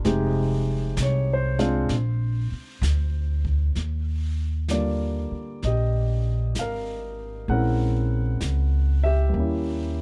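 This short cut from a longer jazz ballad has a dry, dark production, with the piano and upright bass sitting up front. At a slow 65 BPM in 4/4 with swung eighth notes, the mood is romantic and intimate, in Eb major. A mellow concert grand with deep bass accompanies throughout, moving from Fm7 and Bb into Ebmaj9 at 3.8 seconds, then through Bbm7b5 to Eb7b9 at 9.3 seconds. Pizzicato upright bass on gut strings gives a woody, thumpy low end. Further back in the mix, an airy, polished brush kit with a medium-tuned snare, hi-hat and boomy kick sounds as if heard in a small room.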